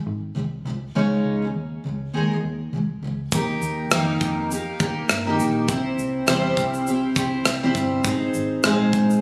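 A double-tracked, picked steel-string acoustic guitar opens this carefree, sunny acoustic pop piece at 0.0 seconds, its jumbo body giving a dark, full-bodied tone that sits up front, with finger squeak audible on the strings. A vintage muted electric bass, played with the fingers, enters almost at once, round and foam-muted with an amped character, holding the low end beneath the guitar's chords as they move from Ab5 through Dbsus2 and Ebsus4. At 3.3 seconds a modern studio drum kit joins with a tight kick, rim click and shaker, its acoustic, small-room sound placed up front. The groove moves at 102 BPM in 4/4 with a gentle swing on the sixteenths, while the harmony settles onto Eb, C and Ab. Light reverb and small-room ambience, captured on a phone in the room, give the recording a casual, intimate feel, and the passage is cut from a longer piece.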